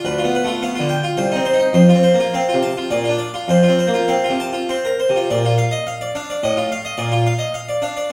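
A full, plucked solo harpsichord with two sets of strings sits up front in this flowing, dance-like baroque-style suite movement in 3/4, played with a rubato feel, ranging from low bass to bright treble, and washed in a wet recital-hall reverb heard from further back in the room as the harmony moves through a brief opening section before a second section from 5.3 seconds settles home at 7.0 seconds in this short cut from a longer piece.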